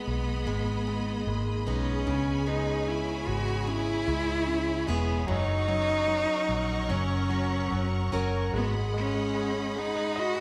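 At a slow, straight 75 BPM in 4/4, this heartbroken pop ballad in G# minor is cut from a longer piece, with a rich, smooth solo cello singing the bowed melody up front over a clear concert grand piano whose action noise and long sustain feel intimate, while a bright, lush studio string section holds sustained chords above. Picked arpeggios from a full-bodied steel-string acoustic guitar sit in the background until 9.1 s, and a dark, foam-muted fingered electric bass stays round and punchy beneath, moving through G#m, C#m7 and F# before settling on G#m7 at 8.5 s. The whole emotional passage is bathed in the wet reverb of a church or concert hall.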